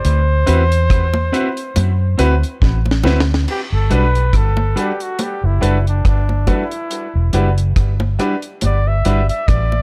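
A breathy flugelhorn with light vibrato and scooped, jazz-style notes carries the melody through tape echo, moving into a solo at 3.5 seconds after a drum fill. This sweet, smooth lovers rock reggae excerpt sits at 70 BPM in G major with swung 16ths, moving from D13 to Gmaj7 and Em7. A round, punchy, foam-muted bass and a dry, dark drum kit with a high-tuned snare and tight kick sit up front, while intimate grand piano with audible action noise and clean, fingered electric guitar stabs float in dub echo, and low-tuned bongos played with hard hands add close percussion.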